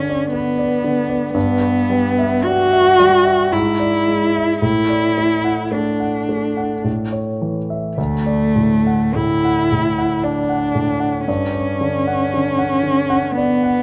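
In a slow, rubato triple metre with uneven beats, this lyrical romantic duo sets a bowed cello melody, rich with vibrato and expressive portamento, up front over a concert grand piano accompaniment. The piano sounds intimate and polished, with deep bass, long sustain and audible action noise, as the harmony moves from G through E7/G# and D/A to D before settling on Gmaj7(no3) at 11.3 seconds. Close, detailed microphones in a moderate recital hall catch a faint mains hum in this warm passage cut from a longer piece.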